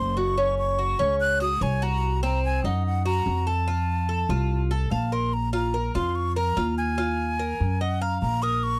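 A straight 4/4 pulse at 145 BPM drives this sultry Cuban son and guajira passage in Bb minor, cut from a longer piece, with chords moving through Cm7b5, F, Bb5 and Ebmadd9. A breathy metal jazz flute carries the melody with vibrato, a soft attack and lifted highs, its playing unsteady. Up front, a picked Cuban tres spins metallic arpeggios on double strings, some doubled at the octave, while a plucked upright bass on gut strings sounds woody, dark and thumpy, all in a dry, close 1970s-style studio sound with light reverb.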